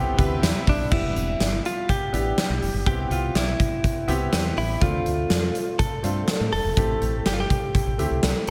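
A big arena sound bathed in lush hall reverb frames this urgent, nostalgic 1980s-style pop fragment, where a clean, compressed electric guitar carries the melody through tape echo over a clear baby grand piano accompaniment with slapback echo, a dark, round fretless bass and a punchy, up-front drum kit with bright cymbals and tambourine, while a smooth, bowed violin section adds a brief second line from 0.2 to 0.9 s as the chords move from Em7 through Cmaj7 and Dm7 to Am7.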